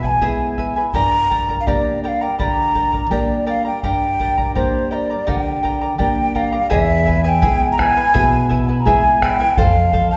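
A straight 4/4 pulse carries this festive, earthy Andean folk excerpt, cut from a longer piece, with a deep bombo sounding distant, as if from a large room. Up front, a large wooden end-blown quena carries the melody with a breathy, mellow tone, soft attack and vibrato, while a bright, shimmering fingerpicked charango with double strings and a dark, full-bodied nylon-string guitar, thumb-plucked with audible finger squeak, fill out the accompaniment. The ensemble rings in the reverb of a recital hall, and the music moves into a new section at 6.7 seconds.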